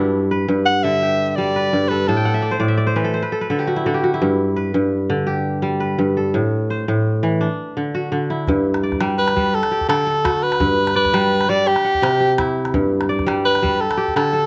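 West African traditional string and xylophone music in a flowing 12/8, this recording is cut from a longer piece. A fingerpicked kora carries the arpeggios throughout, ringing and crisp, placed up front, and it slips in a fill from 2.1 to 4.2 seconds. A soprano saxophone plays the jazz-style solo melody with light vibrato and a smooth top, sitting up front, with a brief phrase early on and a longer line from 9.2 seconds to the close. A small, vintage-sounding calabash joins at 8.5 seconds with band-limited, low-level percussion as the second section begins. Light reverb, close and detailed microphones, and a faint mains hum give the whole a warm, intimate character.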